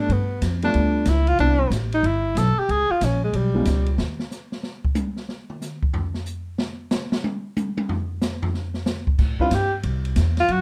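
A warm, dark studio sound with light reverb frames this relaxed excerpt of small-group swing and bop, led up front by a tenor saxophone with vibrato, a soft attack and scooped notes over a mellow, boxy, slightly detuned upright piano, a growly, woody pizzicato upright bass and an open jazz drum kit with a boomy kick. Just before 4.0 seconds the piano and saxophone fall away, and at 4.0 seconds the kit takes a solo across snare, toms, hi-hat, ride and crash as the bass trails off a moment later. The bass returns at 9.2 seconds on an Am7, followed by the saxophone and a brief touch of piano.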